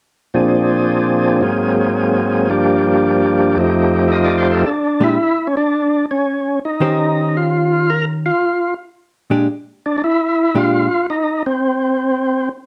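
A percussive tonewheel organ opens the passage at 0.3 seconds, carrying the melody up front with a full, thick tone that is lightly overdriven and colored by third-harmonic percussion, vibrato and a slow rotary speaker. This short cut from a longer jazz piece swings at 112 BPM in 4/4, with a greasy, soulful mood in B-flat mixolydian. The organ moves over Bb9, Ab9, Gm7 and F7 before the harmony settles into Bb6 and Eb13. At 5.0 seconds a hollow-body electric jazz guitar joins as accompaniment, its dark, clean, picked sound compressed and placed up front beside the organ. The guitar stops at 10.9 seconds, just before the chords drop away, leaving the organ to finish alone in a moderate studio reverb.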